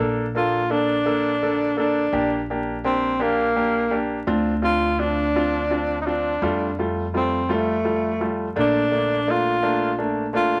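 A slow, straight 6/8 sway at 56 BPM carries this romantic, heartfelt pop ballad in Bb major, where a breathy, whispered tenor saxophone delivers the up-front, jazz-style melody with vibrato and scooped notes from 0.4 seconds, over a clear, polished concert grand piano and a woody, thumpy pizzicato upright bass, set in moderate studio reverb beneath a layer of vinyl crackle in this brief excerpt.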